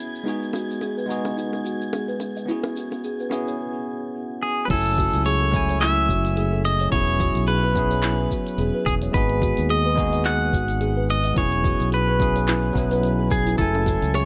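Warm and smooth, this sunset chillout excerpt opens with a bright, bell-like tine electric piano with delay, a deep house drum kit with crash, handclaps, hi-hat and shaker, a woody kalimba playing short arpeggios with delay in the background, tight high-tuned bongos, and an airy, breathy wind-like noise texture. At 4.4 seconds a clean, compressed pedal steel guitar takes the melody up front, played with fingerpicks, slide and volume swells through tape echo. From 4.7 seconds a dark, round and punchy fretless electric bass and a deep, overdriven electronic kick sitting in the background join in over a gently swung groove and minor-seventh and ninth chords, all under light reverb.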